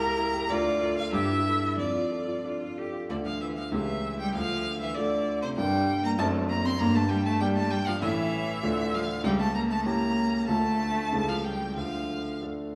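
A focused violin with vibrato carries the melody above an intense, smooth-topped cello line and warm grand piano accompaniment in this urgent, stormy classical-period piano trio excerpt, a quick D minor movement in 2/4 at 90-100 BPM played with rubato, whose harmony darkens through Gm and a C#dim7 before returning to Dm, all bathed in a wet scoring-stage reverb.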